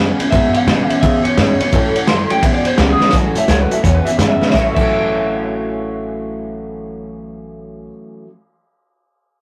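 Rollicking and retro, this short rockabilly excerpt swings at 170 BPM in A major, with a twangy, slightly broken-up lead guitar carrying the melody over a second small-amp guitar riffing along and a woody, thumpy pizzicato upright bass on gut strings. A vintage drum kit sits up front with a punchy kick and muffled, lo-fi tone, dropping fills at 3.0 and 4.4 seconds before falling away at 4.8 seconds, while a full-bodied picked steel-string acoustic with finger squeak picks along in the background and a jangly, metallic tack piano plinks very quietly. The rough rehearsal-room sound carries saturation and moderate reverb, shifting between E6 and A6 chords.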